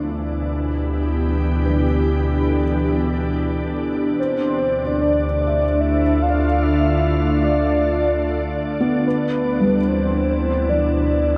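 An organ-like, pure pad with ensemble chorus sits up front holding sustained chords in this melancholic, spacious ambient excerpt in 3/4, over a round, deep analog bass and a felt-muted upright piano whose arpeggios fade in from the background with audible action noise and diffuse delay, while a velvety synth lead with chorus, tremolo and cassette-tape colour takes up the melody at 4.2 s, the harmony moving from Em/D to Dm7 and back inside a huge, lingering reverb.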